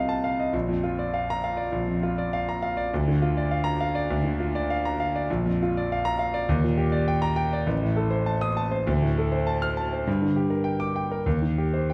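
Sparkling and brilliant, this short excerpt from a classical virtuoso piano study unfolds in a flexible rubato 4/4, with a solo concert grand sounding up front, clear and smooth, its deep bass and vintage character spanning from A1 to F6. A moderate scoring-stage reverb gives the piano a sense of space, while a vinyl crackle sits beneath it. The harmony moves from an opening F7/C through Bb, Ebmaj7, Adim and Dm7 before reaching Gm around 10.1 seconds and Cm/Eb near 11.3 seconds.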